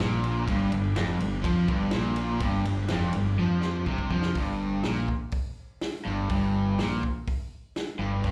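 An up-front overdriven electric guitar and a scooped, distorted second guitar with slapback echo drive a confident, sunny classic rock riff at 124 BPM in G mixolydian, over a round, fuzzy fingered bass, a vintage drum kit with a punchy kick and dark cymbals, and a very quiet, shouting tonewheel organ on slow rotary that holds chords until 4.3 seconds, while a drum fill from 3.4 seconds leads into a shift from G to G minor at 4.4 seconds, all heard through a live club PA with moderate reverb.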